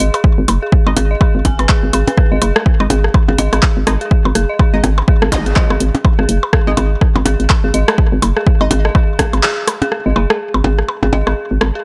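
Swung sixteenths drive this clinical, hypnotic minimal techno fragment, where an overdriven, punchy kick sits up front beside a hollow, bouncy FM bass and overdriven electronic blips and rim clicks with tape echo, while an analog drum machine adds handclaps and filtered hi-hats, an eerie, inharmonic detuned synth bell carries the riff through chorus, delay and sidechain pumping, a muted dub chord stab lingers in the background with phaser and tape echo, a brief zap flickers at 5.3 seconds, and after the kick drops out at 9.4 seconds a round, tine-like thumb-piano-like pluck sounds at 10.2 seconds within a digital ambience.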